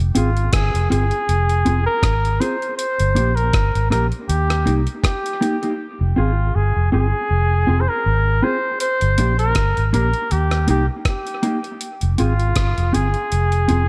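Bathed in light digital reverb, this meditative, heavy dub reggae excerpt moves at 80 BPM in F dorian with a lightly swung sixteenth feel: a dark, foam-muted vintage fingered electric bass sits round and punchy up front, a clear flugelhorn with vibrato carries the melody through dub echo, a mellow, compressed electric guitar plays clean accompaniment also fed into dub echo, and a dusty, gritty sampler-style soul kit of hi-hat, rim click and thumpy kick drum holds the pulse over chords cycling from Fm to Gm to Eb.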